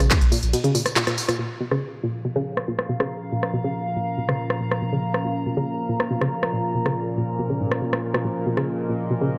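This is a short cut from a longer piece of driving peak-time techno at 140 BPM in a straight 4/4, hypnotic and industrial in mood and set in B-flat minor. It opens on a drop: a woody, wave-folded pluck riff sits up front, its percussive, organic tone shaped by chorus, delay and sidechain pumping, while a deep, thick, saturated sub bass pumps beneath it until 0.5 s. A layered electronic drum kit, up front and tape-warm with smooth hats, brings crash and ride cymbals, handclaps, rim clicks and tambourine, all dulled by low-pass filtering through a break marked by a band accent. The harmony settles onto B-flat minor at 1.4 s, and an evolving, detuned analog drone with chorus and phaser rises in at 2.0 s, followed shortly after by a warbly, nostalgic, lo-fi pad with its own built-in reverb, both breathing with the sidechain pump. A moderate, lush hall reverb wraps the mix.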